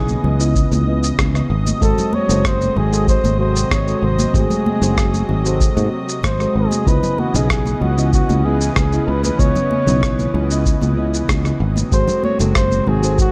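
A straight 4/4 groove sets the pace for this relaxed, wistful sunset chillout piece, cut from a longer track. A deep, overdriven electronic kick drum, re-recorded in a large room, joins at 0.6 s, while a gritty, compressed shaker and rim click and thick-skinned congas, close and dry in the background, fill in the percussion. Up front, a growly fretless electric bass sustains beneath a round FM electric piano, which is softened by chorus and a low-pass filter sweep that runs the whole length. A lush, detuned sawtooth unison pad with a slow attack and chorus holds bright sustained chords that move between C#m9 and G#7b9. Over this, a mellow, close-miked flugelhorn plays a jazz-style solo melody with light vibrato, a soft attack and a touch of digital delay, all set in a dark production with light reverb and digital ambience.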